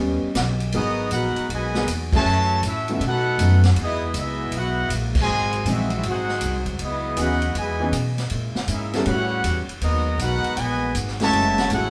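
This excerpt of sultry, swinging big band jazz opens with a warm concert grand piano, its action noise audible and its low register deep, beside a woody, thumpy pizzicato upright bass sitting up front and a mellow saxophone section holding very quiet sustained chords. An acoustic drum kit with a high-tuned snare, boomy kick, hi-hat, ride and crash cymbals drives a brisk 4/4 swing at 159 BPM in G# minor. At 0.7 seconds a clear, tight trumpet section takes the melody up front with vibrato, and a trombone section with light vibrato and a smooth top adds a second line beneath it. The full band punches accents at 2.1 seconds and again at 5.1 seconds, over rich jazz harmony moving through chords such as G#m9, Emaj7, G#7b13 and A#m7b5. Wet studio reverb wraps the ensemble, which sounds like a band playing live together in one room.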